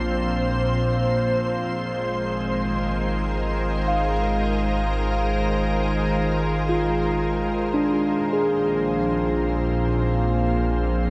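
Weightless and peaceful, this ambient fragment from a longer piece rests on a bright, up-front organ-like pad holding sustained chords with ensemble chorus, while a mellow tine electric piano plays delayed arpeggios in the background, a round analog bass sits deep and dark beneath, and an ethereal glass harmonica adds glassy texture, set inside a wet shimmer reverb over Bbsus2 and Ab chords.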